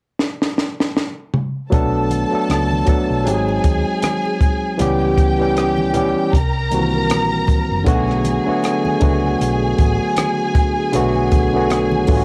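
A barky, lightly overdriven tine electric piano sits up front in this cinematic, silky stretch of lush 1970s-style soul at 78 BPM in B dorian, entering at 1.7 s over a Bm7 alongside dark, woody bowed strings with vibrato and tape echo, a round hollow-body fingered electric bass and very quiet, low-tuned congas, after a compact cocktail drum kit with a high-tuned snare and punchy kick opens with a fill from 0.2 s, all captured in a home cassette recording with moderate studio reverb.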